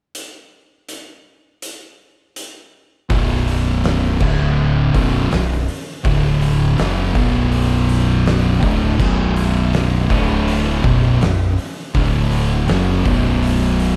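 Thick fuzz guitars, one up front and two tucked into the background (one of them double-tracked), enter at 3.1 seconds with a distorted riff over B5 and D5 power chords, joined by a punchy, overdriven fingered electric bass, after an oversized low-tuned drum kit with a boomy kick, fat snare, hi-hat and crash cymbal plays alone from 0.1 seconds in this ominous, sludgy stoner and doom metal excerpt, set in a small room with light reverb.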